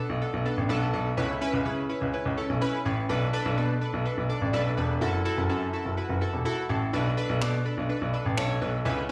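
Chorused retro synth keys open this driving, energetic dance-pop excerpt in B minor at 125 BPM, their glossy pulse-wave and sawtooth tone carrying a noise layer, pulse-width modulation and a filter sweep, with fast-attack notes that decay. From 0.1 seconds a clear, polished baby grand piano sits up front and takes the bass role in its low register, giving the straight 4/4 groove a solid footing. The harmony moves through Bm7, Aadd9, back to Bm7, then F#m7 before returning to Bm7. Layered electronic finger snaps slip in briefly at 7.4 seconds and drop out by 8.5 seconds, sitting low beneath the keys and piano. The sound carries light reverb and small-room ambience, yet also feels like it is played through a big sound system in a bare room, with a large studio reverb around it. The fragment is cut from a longer piece.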